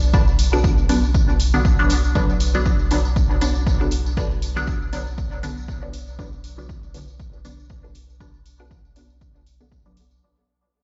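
A filtered dub chord stab sits up front, its detuned, wave-folded tone run through a phaser, dub echo and sidechain pumping while a filter sweep moves across it for the whole excerpt. This is meditative, cavernous dub techno at 119 BPM in 4/4 and B minor, with a 56% swing on the sixteenths and a single Bm chord underneath. A punchy, overdriven electronic kick drum anchors the groove, and a deep, round sub bass on B1 pumps against it with a mellow, sustained sine tone. A layered, overdriven electronic hi-hat sits in the background, and a jingly, close, dry tambourine adds a faint acoustic sparkle. The mix sounds as if it were played on a big sound system in a bare room, with large studio reverb and dark, dulled highs, and the whole passage fades out over its 10.2 seconds as a cut from a longer piece.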